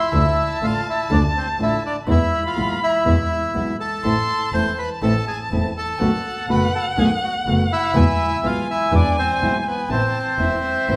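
A wet, roomy reverb surrounds a band playing live together in a large studio, in this short cut from a longer tango in A harmonic minor at 123 BPM, taken with a rubato feel. Up front, a reedy bandoneon carries the dramatic, melancholic melody, while a distant bowed violin adds a warm second line with vibrato and portamento. A dark, small-sounding fingerpicked nylon-string guitar and a rich bowed double bass, also sliding expressively, support the chords as they move from Dm through E, Am and B7 back to E before settling on Amadd9 at 9.9 seconds.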